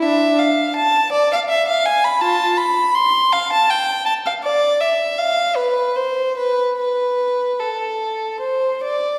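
A single bowed violin, up front and close, carries this flowing, radiant baroque-style suite movement alone for the whole 9.2 seconds, its warm, smooth tone colored by vibrato and moving evenly between D4 and C6. The pulse sits in 3/4 at roughly 72-83 BPM, bent by a rubato feel, and the passage is cut from a longer piece. A wet recital-hall reverb with a 1.5-second decay surrounds the instrument in the resonance of a church or concert hall.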